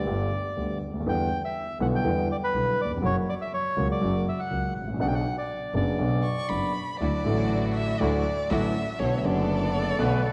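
A reedy, close-miked bandoneon carries the melody up front in this melancholic, tense tango fragment, set at 121 BPM in 4/4 with a rubato feel in B harmonic minor. Beneath it, a concert grand piano with deep bass supplies the accompaniment, while a distant, focused bowed double bass holds the low end with vibrato. The bandoneon drops out at 6.7 seconds, and at 7.0 seconds the music turns to D major as a violin takes a solo with expressive portamento and a soft attack. Smooth, even symphonic string stabs sit in the background of this passage, and a pure, metallic flute joins briefly at 9.7 seconds. The harmony moves from G through Em7 and F# to Bmadd9, then on to Dadd9 and Bm7, with the mix set in concert hall reverb and colored by the warbling pitch drift of worn cassette tape.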